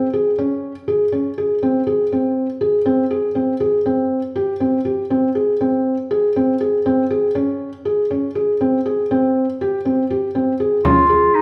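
Set in a straight, uneven 7/8 meter, this contemporary chamber piece, cut from a longer work, carries a hopeful, shimmering mood. A felt-muted upright piano plays arpeggios alone for the first 10.8 seconds, its thick-felt tone soft, mellow and intimate, with a dark, natural character that sits up front. The harmony cycles through open added-eleventh, inverted and rootless major-seventh colours before shifting to a new chord at 10.8 seconds. At that moment a classical-style clarinet enters briefly with a second line, its solo voice carrying warmth yet sounding distant and roomy. A frame drum adds a deep, large, hard-handed accent, compressed and saturated, that ends just before the piano and clarinet stop at 11.4 seconds. A wet recital-hall reverb surrounds the performance, giving it the resonance of a church or concert hall.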